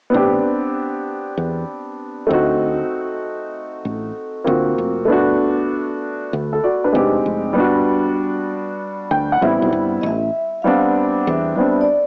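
A smoky, nocturnal hip hop excerpt with a home-cassette, small-speaker sound bathed in a lush hall reverb, swinging at 97 BPM in A dorian as a woody, tape-tinged upright piano comps jazz chords like a rootless Am11, D7b9 and Gmaj9 over a growly, round fretless electric bass, adds a fill from 8.8 to 10.0 seconds, then is joined by a mellow, airy soft-mallet vibraphone melody with slow motor vibrato entering at 10.0 seconds.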